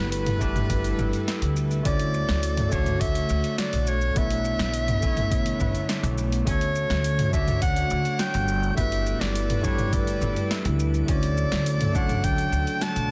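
A clear, close-miked soprano saxophone carries a vibrato-tinged melody over a gritty, barky electric piano played through a combo amp, a woody pizzicato upright bass with tube saturation, and a thumb-plucked concert harp in the background, with tape echo on the saxophone, piano and harp. A breathy, warbling pad with chorus holds sustained chords as a punchy, overdriven deep house kit of hi-hat, shaker, snare and toms comes in, joined by a deep electronic kick entering at 0.4 seconds, both re-recorded in a small room. At 7.6 seconds a very quiet, glassy texture of drifting overtones appears, rounding out this relaxed, blissful sunset chillout excerpt with its light reverb and dense, heavily limited master.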